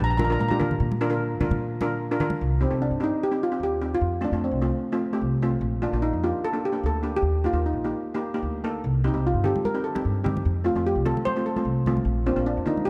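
A dark, warm mix sits in a moderate concert-hall reverb, giving this festive, carefree calypso fragment of a longer piece a roomy glow. At 149 BPM in a straight 4/4 in Bb major, a lead steel pan carries the melody up front while a double-seconds pan fills in accompaniment beneath it, both metallic and shimmering under hard rubber sticks with a smooth edge. A woody, warm upright bass, plucked pizzicato on steel strings, anchors the low end close to the listener throughout. Bright, damped congas with a thin, medium-tuned skin sit close in the mix, entering at 0.2 seconds, dropping out at 2.4 seconds and returning at 9.4 seconds. The harmony moves through Bb, Cm, F and Eb before settling back on Bb as the fragment ends.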